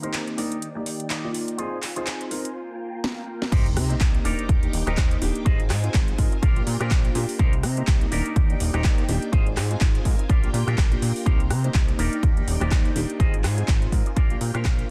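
Nostalgic and funky, this filtered disco house cut moves at 124 BPM in C minor with a swung sixteenth feel, opening on a filter sweep where a gritty, phased grand piano, a swirling string machine with ensemble chorus, a dark envelope-filtered electric guitar riff and a house kit with cracking snare, metallic hats and handclaps all pump against the sidechain. A drum fill leads into the drop at 3.5 seconds, where a punchy, up-front electronic kick and a fat, detuned analog bass arrive alongside a very quiet sub drop, cycling through Ebmaj7, Ab6, Gm7/Bb and Cm7. The mix is dry, dense and heavily limited, and the passage fades out from 13.8 seconds.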